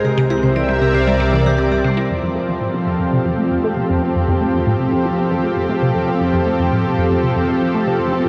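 Drenched in a huge, dark reverb, this short cut from a longer piece of expansive, cosmic, sequencer-driven space music opens with a lush, warbling unison pad holding chorused chords over C7 while a metallic, ringing vibraphone plays delayed arpeggios and a fat, saturated analog bass sits beneath. A juicy, squelchy blip pluck runs its riff throughout, coloured by phaser and delay. At 2.1 s the vibraphone and bass drop out as the harmony settles on Fadd9, and a filter sweep moves across the synth arpeggio sound until 8.3 s.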